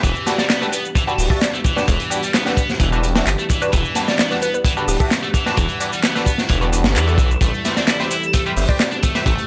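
A crunchy, saturated breakbeat kit with a tight kick and rolled-off top drives this swaggering, gritty 130 BPM breakbeat cut in E minor, joined by tape-warm electronic shaker and handclaps, an up-front thick, swirling phased saw bass, a bright double-tracked high-gain guitar riff through tube saturation and analog delay, nasal band-passed chord stabs entering at 0.3 seconds, a glassy wavetable pluck melody with an AM radio tint from 0.4 seconds, and a warbling vintage pad pumping in the background, all on a dry hardware recording with light reverb as Em7 shifts to Am7 at 7.4 seconds.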